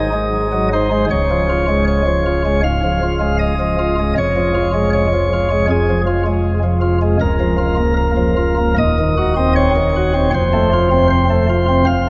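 A chamber organ with sparkling flute stops carries this short, majestic chorale-style classical passage alone, its light, bright voicing and crisp chiff sitting up front and spanning from deep bass to high treble. The pace is unhurried and freely rubato, with reverent harmony moving through a handful of chords before closing on F at 10.3 seconds. A long, wet cathedral reverb surrounds the organ, and the clip is cut from a longer piece.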